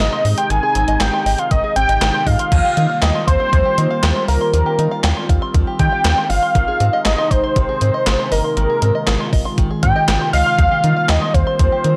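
A dry, gritty cassette-tape sound frames this nostalgic, bright synth-pop piece, cut from a longer work, where an up-front gated 80s digital drum machine hits with a thumpy kick, an overdriven gated-reverb snare, handclaps, hi-hat and crash cymbal. A fat, detuned sawtooth lead with chorus and vibrato carries the melody over a rubbery, bouncy square bass, while a swirling phased analog pad holds sustained chords and a fingerpicked open-back banjo adds plunky, twangy arpeggios through analog delay. The harmony moves between Ab and Ebadd9, with a new section beginning at 2.5 seconds.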